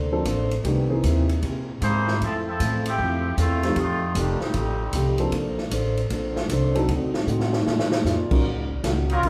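A roomy, reverberant studio sound puts a live big band in one space, with the drum kit and the brass up front. This sultry, dramatic big-band swing cut moves at 154 BPM in 4/4 with a swing feel on the eighths, over rich chords such as Bbmaj9, C7alt and D7b9. A full-bodied picked acoustic guitar, a woody, thumpy pizzicato upright bass on gut strings, and a baby grand piano hold down the accompaniment. Around them, the kit sets a natural, boomy-kicked groove on ride, hi-hat, snare and crash, with a drum fill at 7.3 seconds. From 1.8 seconds a brilliant, nasal muted trombone section with light vibrato carries the second line. At 9.1 seconds, just before the cut, a breathy, whispered plunger-muted trumpet enters with a wah-wah note over brief sustained trombone chords.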